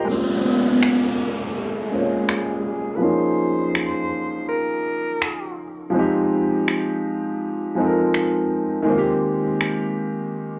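Contemporary R&B at 82 BPM with a sensual, late-night mood, built on a clear, deep-bassed concert grand piano accompanying through Bbm7, Eb9sus4, Fm9 and Abmaj9 under a low-pass, cassette-tape haze, joined by an electronic downlifter, tape-warm electronic finger snaps, and a raspy, gritty alto saxophone melody with light vibrato and scooped notes, filtered and trailed by analog delay, from 1.6 to 5.5 seconds, before a piano fill at 10.3 seconds, all set in the intimate ambience of a small room captured on home cassette.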